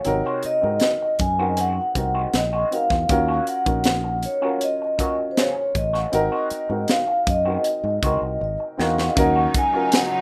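A mellow, close-miked vibraphone carries the melody over a dark, intimate baby grand with audible action noise and a tight funk kit with a high-tuned snare, setting a smooth, cinematic 1970s-style soul groove at 79 BPM, moving between Ab7 and Ebm7. A slightly broken-up, lo-fi electric guitar riff with wah and harmonic tremolo plays alongside a punchy fingered bass, and after a drum fill from 8.4 seconds, a bright, intense string section enters with bowed chords at 9.2 seconds. A jingly tambourine flickers in the background near 9.9 seconds, all within a rough home-demo mix with light reverb, cut from a longer piece.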